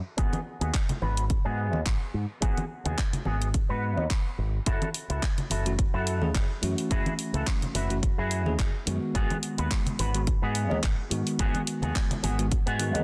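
A dense, heavily limited modern mix with light reverb carries this cosmic, groovy nu-disco passage, cut from a longer piece, at 107 BPM in 4/4 with a swung sixteenth feel over G#m7 and F#m7 chords. A punchy, up-front electronic kick and a layered house kit of handclaps and hi-hat, with soft clipping on the snare, sit over soft-handed, saturated congas in the background. A bright fingered bass with an envelope filter and a twangy, picked electric guitar riff through its own envelope filter, analog chorus and low-pass filter run from the start to the end, with a filter sweep across the clean guitar, and a bell-like tine electric piano with subtle chorus joins them as accompaniment at 5.7 seconds.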